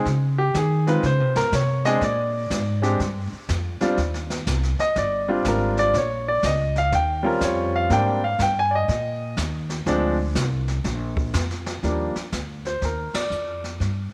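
A clear, up-front concert grand piano carries the melody in this swinging, playful jazz piano trio excerpt, soloing until 11.8 seconds over woody pizzicato upright bass and a distant, roomy brush kit with dark cymbals, a high-tuned snare and punchy kick, before the band hits an accent at 13.1 seconds, all in light studio reverb.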